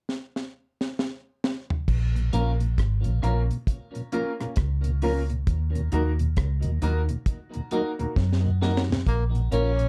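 A dark, softly reverberant production frames this short cut from a longer roots reggae piece, its mood hypnotic and meditative. A deep, dry drum kit opens with a fill from 0.1 seconds, its high-tuned snare, tight kick, rim clicks, toms, hi-hat and crash sitting up front with a rolled-off top. At 1.9 seconds a round, foam-muted electric bass arrives, punchy and amped, as the harmony settles on Bb minor before moving to Eb minor. Around it, a mellow tonewheel organ turns through a slow rotary speaker with key click and tape echo, a clean picked electric guitar is coloured by phaser and echo, and a woody, slightly detuned upright piano adds vintage stabs. After a second drum fill, a breathy, whispered tenor saxophone enters at 9.1 seconds with an intimate, soft-attack line trailed by tape echo as the chords return to Bb minor.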